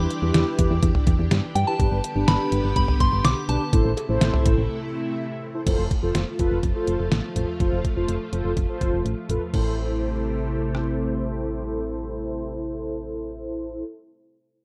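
Synth-pop at 124 BPM in A minor with a cool, driving mood, this excerpt from a longer piece opens with a pure, gentle FM synth bell melody glistening through chorus, phaser, delay and plate reverb until 3.9 seconds, over a brassy, detuned synth brass accompaniment with vibrato, a lush vintage string machine ensemble with slow-attack sub-octave sawtooth pads, a punchy, round FM bass, and a thumpy, sampler-style 8-bit drum machine with cowbell, rim clicks, toms and crashes that sits up front before a break at 4.7 seconds and drops out at 10.9 seconds, leaving the bass and chords to carry the dark, moderately reverberant production through a shift from Em7, G and Am to F and Am7.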